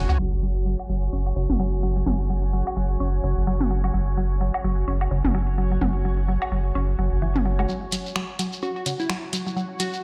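Minimal techno at 128 BPM in 4/4, with a 16th-note swing of 58% and a clinical, cool mood, this cut from a longer piece opens with a woody, round mallet-like synth pluck riff carrying chorus, 12-bit sampler grit and tape echo. Beneath it a deep, thick saturated sub bass sits up front, while a cloudy granular pad drifts high above with slow attack and long release through its own reverb. Electronic woodblock and toms with dub echo fill out the groove until 7.7 seconds, when the bass and woodblocks stop and a grainy, close shekere, heard briefly at the very start, returns, joined at 7.9 seconds by a bright, layered house kit of finger snaps and hi-hats. A filter sweep on the synth arpeggio runs through both halves, and the second half acts as a build-up, with a glassy, crystalline wavetable pluck entering at 8.6 seconds, detuned and ring-modulated with a moving notch, chorus, cassette tape colour and dub echo. 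The mix sounds played on a big sound system in a bare room, with a large studio reverb and a low-pass filter softening the top.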